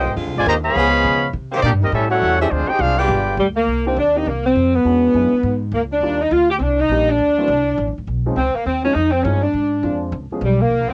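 A tight saxophone section with clear vibrato carries the melody from 3.4 seconds in this brisk, brassy big band swing excerpt at 205 BPM in 4/4, settling into C minor over chords such as Cm7, E13 and Ebmaj7. Before that, a close-miked trumpet section leads over a trombone second line and sustained saxophone chords, while a woody pizzicato upright bass plays up front throughout. A mellow, dark grand piano joins as accompaniment at 3.9 seconds, and the horns and piano carry a cassette tape tint in a moderate booth ambience with a homemade character.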